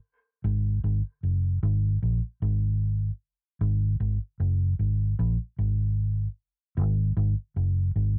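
Reggae at 76 BPM in a straight 4/4, this short cut from a longer piece is heavy and spacious, carried entirely by a vintage muted fingered electric bass. The bass enters at 0.4 seconds and holds the low end between F#1 and A#1 through to 8.2 seconds, its dark, round, foam-muted tone amped and sitting up front. The dry home cassette recording, tuned to A4 = 436 Hz, keeps the instrument close.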